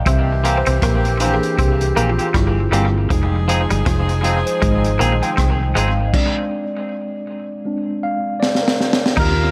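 Lovers rock reggae at 79 BPM with a swung sixteenth feel, this tender, smooth excerpt moves through C7, Fm7 and Bb9/Ab, with a mellow tine electric piano taking a solo up front over a round, foam-muted bass and a crunchy breakbeat kit whose saturated, gritty sound carries gated reverb and tape echo. A bright, punchy saxophone section plays a second line, one twangy electric guitar holds a fingered riff, and a second, picked electric guitar adds stabs in the background until about 6.0 seconds, each of these three touched with tape echo. After a stop beginning at 6.1 seconds and a drum fill, a reedy, breathy melodica enters on a single note at 9.2 seconds.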